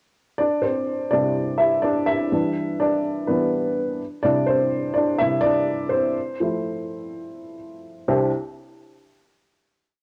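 Hopeful and uplifting, this short pop piece in C major moves at 125 BPM with a light sixteenth-note swing, played entirely on a solo upright piano that sits up front with a dark, woody, mellow tone and short sustain, heard through cassette tape. The piano states close-voiced chords in a quarter-note rhythm across a brief verse from Cadd9 through Em7 and Fmaj7, settling on a final Cadd9 at 8.1 seconds. Light reverb and a small room ambience give it the intimate feel of a home recording on cassette.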